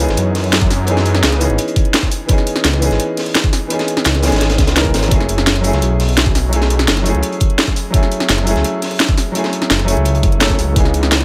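A dry, close-sounding excerpt of rolling, dreamy liquid drum and bass at 170 BPM in F# dorian, where a soft, felt-muted upright piano with audible action noise and a touch of delay moves from C#m9 to F#m9 at 5.1 seconds over a menacing, detuned saw bass with a filter swell, while an overdriven drum and bass kit with a cracking snare and bright hats and a knocking electronic kick entering at 0.6 seconds sit up front, and a gritty, high-passed breakbeat kit with a high-tuned snare stays in the background.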